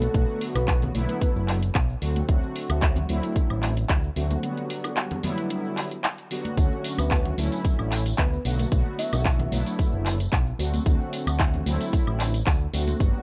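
Sunny and groovy, this nu-disco excerpt rides a straight 112 BPM in D major, with a punchy, up-front electronic kick and a house kit of handclaps, bright hats, tambourine and woodblock, while congas, cabasa and bongos sit in the background. A dark, round picked electric bass with an envelope filter and tube saturation anchors the groove under mellow, detuned sawtooth synth brass that pumps with sidechain and carries chorus and analog delay through changes from Bm7 to D7, Gmaj7 and Dmaj7, with a break from 4.4 to 6.6 seconds. A soft, full-bodied octave-layered synth lead with phaser and vibrato surfaces only briefly, returning from 7.0 to 9.5 seconds, all set in digital ambience on a dry, gritty hardware recording.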